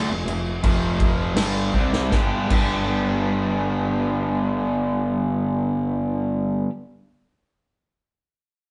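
Recorded as a band playing live in one stone room, the sound carries a moderate reverb and a dull top end that stops short of any sparkle. This short classic rock fragment in G mixolydian moves at a driving, swaggering 78-86 BPM in straight 4/4, easing back in tempo over its opening bars. Two overdriven electric guitars share the riff up front: one cranked stack guitar with a bright, picked edge, and a raw garage guitar with a rounder, warm bite. Beneath them a fuzz picked electric bass adds punchy, amped grit. The vintage acoustic drum kit enters at 0.3 seconds with a boomy kick, medium-tuned snare and dark crash cymbal in a pumping room, and plays a fill just before the harmony shifts from F5 to G at 2.1 seconds. The drums drop out at 2.7 seconds, leaving the guitars and bass to push the riff on.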